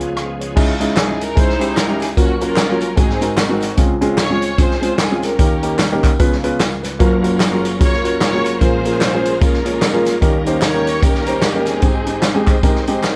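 Opening on a dark, mellow grand piano with audible action noise, a roomy swinging big-band drum kit and a brief, barely audible French horn section, this jubilant, hopeful uptempo gospel excerpt at 149 BPM swings in 4/4 as tambourine and handclaps join at 0.6 s, an expressive string section carries the melody with vibrato and portamento from 1.0 s, and a shouting tonewheel organ with slow rotary speaker returns in the background at 7.0 s over chords moving from Db7 through Gbmaj7 and Bbm7 to Abmaj7.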